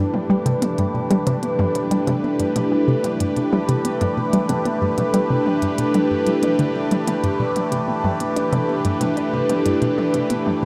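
A phased analog pad and an analog pluck riff open this short cut from a longer piece of ambient, sequencer-driven space music, set at 93 BPM in 4/4 with a straight feel and resting on a single G major chord. The pad sits up front with sustained, full-bodied chords built from detuned sawtooth and wave-folded triangle tones, its soft attack and long release given a swirling, evolving character by phaser, chorus and shimmer reverb. Beneath it, the pluck plays a riff with a fast attack and short decay, its round, bright tone layered from sawtooth, pulse wave and noise, roughened by vintage 12-bit sampler grit and trailed by delay and shimmer reverb. A minimal click drum kit slips in at 0.1 seconds, its clicky hi-hats and toms overdriven and echoed with delay, sitting low beneath the synths. The whole recording is drenched in a huge, wet reverb that places it in a vast, echoing space, leaving a luminous, expansive mood.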